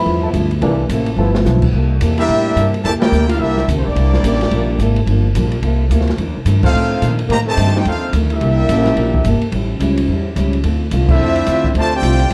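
Big band swing jazz with a swinging, brassy feel, opening on a brief solo from a present baby grand piano over growly pizzicato upright bass, picked steel-string acoustic guitar with finger squeak, a veiled cup-muted trombone section in the background and a dark open jazz drum kit with a boomy kick, before a brilliant, close-miked trumpet section takes the melody with plate reverb over a soft-attacked vintage trombone section's second line, the band punching accents at 3.0, 6.6 and 11.1 seconds in a modest club room.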